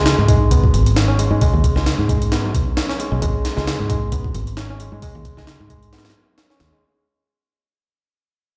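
A gritty breakbeat kit with a thumpy kick and a high-tuned snare sits up front in this raw, gritty breaks excerpt, entering a moment after a punchy, foam-muted fingered electric bass with tube saturation and a barky, overdriven reed electric piano riff through a combo amp with delay, over a G#m7 chord, all blasted into a large, reverberant bare room as the drop fades out by 6.8 seconds.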